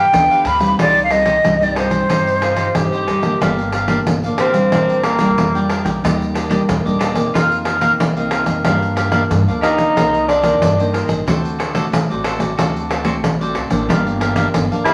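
A samba and choro excerpt at 92 BPM in straight 4/4, nostalgic and bittersweet, opening in C minor before turning to G minor at 3.4 s. A breathy, hollow silver concert flute carries the melody up front with vibrato and tongued notes until 3.0 s, while a crisp, picked cavaquinho and a full-bodied, fingerpicked nylon-string guitar with audible finger squeak accompany throughout. A woody, thumpy pizzicato upright bass on gut strings anchors the low end, and a jingly pandeiro sits up front in a live room sound. The tenor saxophone slips in at 2.4 s and takes a solo from 3.4 s, its whispered subtone, soft attack and vintage jazz-style vibrato giving it an intimate presence, returning in short phrases later on. The harmony moves through Gm7, Bb6, Ebmaj7, F7sus4, Cm9 and D7 before settling back on Gm7, all bathed in a wet studio reverb.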